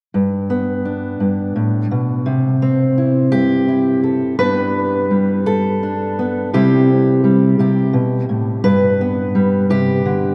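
A fingerpicked steel-string acoustic guitar, dark and woody with the dull bite of old strings, plays solo and up front from 0.1 seconds in this gentle, hopeful folk fragment, moving in an unhurried 6/8 at 57 BPM through G major between G and C chords, its notes ringing into a long, vast cathedral reverb with a softened top end until it is cut off at 10.3 seconds.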